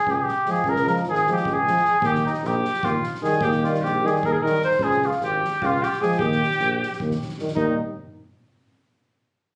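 Wild and exuberant, this Balkan brass band fragment runs at 303 BPM in 7/8 in Eb mixolydian, moving between Db and Eb chords as a veiled, cup-muted cornet leads up front over a mellow tuba bass with light vibrato and a soft-mallet kit with fat snare and punchy kick, while a close-miked trombone and a distant, roomy euphonium add accompaniment from 0.5 seconds and an alto saxophone with vibrato and a smooth top joins on a second line from 1.3 seconds, the band captured on a phone inside a club's reverberant room.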